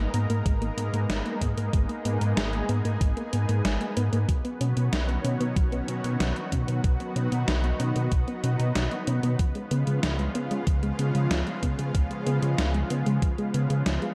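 A thumpy electronic kick sits up front from 0.5 s, anchoring this driving, moody synthwave excerpt at 94 BPM in a straight 4/4. Close beside it, a deep, rumbling detuned saw bass growls with tube saturation and sidechain pumping, its beating sawtooth tone dark and heavy in the low end. A gated 80s digital drum machine supplies hi-hat and snare, the snare carrying that signature gated reverb, with a tape-touched, large-room character. Above, a silky analog string pad holds slow-blooming chords through ensemble chorus and its own sidechain pumping, moving from G#madd9 to Badd9 at 4.3 s and C#7 at 9.4 s. In the background, a soft, round pluck traces mellow arpeggios, coloured by chorus, cassette tape and digital delay. Light reverb and digital ambience frame a dark, warm production.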